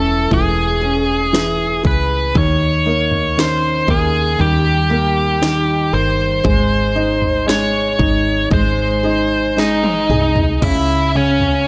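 A biting, overdriven lead guitar sits up front carrying the melody in this short, heartbroken pop ballad excerpt, with an open baby grand piano playing accompaniment and a bright, fingerpicked nylon-string guitar adding delayed arpeggios in the background. A woody, round fretless bass with lush chorus anchors the low end. An electronic house drum kit with a punchy kick and cracking snare enters at 0.3 s, playing a fill from 9.6 to 10.6 s that leads into a new section on C#m, all set in light digital reverb.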